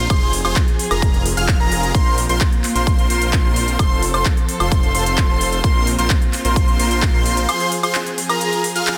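A punchy, up-front electronic kick drives this powerful, anthemic festival progressive house excerpt at 130 BPM until 7.1 s, alongside a crisp-hatted big-room kit of handclaps, hi-hat and woodblock, a thick detuned saw bass that drops out at 7.5 s, huge phased supersaw chord riffs, a bright unison lead spinning arpeggios through lush chorus, cassette tape and digital delay, and a dark, intimate chamber string section holding soft-bowed sul tasto chords, with sidechain pumping on the bass, lead, supersaws and strings over an Fm–Bbsus2–F–Bbsus2 progression in a dense, heavily limited, dry master.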